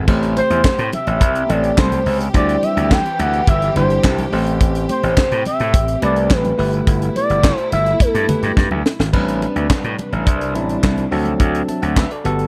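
Lush bowed strings and a gritty, overdriven slap bass open this slick, funky early-eighties boogie funk excerpt, joined at once by a bell-like tine electric piano and a tight, up-front drum kit with a high-tuned snare, handclaps and dark cymbals, while very quiet congas sit underneath and a smooth sawtooth synth lead with chorus carries the melody until 8.6 seconds, when a drum fill leads into the closing passage, all captured in a dry, close studio sound.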